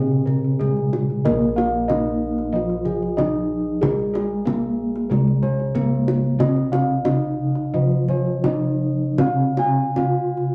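Shimmering and ceremonial, this short cut from a longer piece of Javanese gamelan moves at a stately, unhurried pace in the slendro tuning. Two bronze metallophones struck with padded disc mallets carry the music, one playing the melody with an airy, ringing tone and the other supplying a mellow, mid-forward accompaniment beneath it, their paired tuning producing shimmering beats. A set of bright bossed gongs spins arpeggios above, while a lower set of round, full-bodied bossed gongs, close-miked and dry, anchors the bass from deep bronze tones upward. The kendang adds tight, acoustic hand drumming with a soft touch and a live-room feel, entering at 0.1 seconds. A brief opening passage gives way at 1.3 seconds to the main section, all set in a large studio reverb that lends the bronze a resonant glow.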